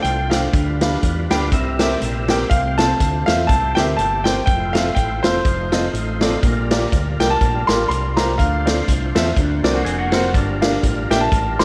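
Swung eighth notes drive a steady 4/4 groove in this jubilant, uplifting stretch of uptempo gospel, cut from a longer piece. An up-front acoustic big-band kit swings on hi-hat, snare and punchy kick, while a round, dark fingered electric bass sits underneath. A brilliant, intimate grand piano carries the melody in the upper register, its action noise audible and a tape echo trailing its lines, and a clear, somewhat worn concert grand with deep bass joins at 0.3 seconds to fill out the accompaniment. A thick, lightly overdriven tonewheel organ holds sustained chords with key click, percussive attack, chorus vibrato and a fast rotary speaker, stepping forward for a fill at 1.0 seconds. Near the close, at 9.7 seconds, a clean, picked electric guitar with an envelope filter adds a brief second line. The ensemble sits in a moderate echo-chamber reverb with a touch of small-room ambience, over a chord progression that moves through sevenths and ends on an altered dominant resolving to a minor chord.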